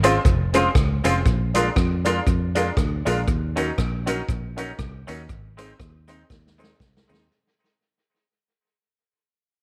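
Bathed in moderate spring reverb and a small-room ambience, this fading cut from a joyful, bouncy swung ska piece puts a round, foam-muted fingered electric bass and a swinging big-band drum kit with a punchy kick up front, with clean, compressed semi-hollow guitar accompaniment and jangly, detuned honky-tonk upright piano stabs over Dbmaj7, Bb7, Ebm7 and Ab, a grainy cabasa in the background, and tape echo on the guitar, drums and cabasa before a drum fill arrives at 6.3 s.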